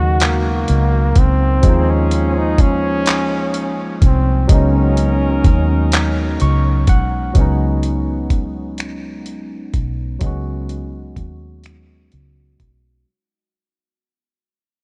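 A breathy, whispered flugelhorn carries the melody over barky, lightly overdriven tine electric piano, with a distant horn section adding background stabs and a round, foam-muted fingered electric bass underneath. A gritty, compressed sampler-style soul drum kit of thumpy kick, hi-hat, finger snaps and handclaps joins at 0.2 seconds. This slow, late-night and sultry six-eight R&B excerpt at 42 BPM moves between C#9sus4 and D#9sus4 chords in a touch of reverb; the flugelhorn's delayed, scooped lines end at 6.4 seconds, and after an electric piano fill, a filter sweep on the electric piano runs through the fade-out from 7.4 seconds.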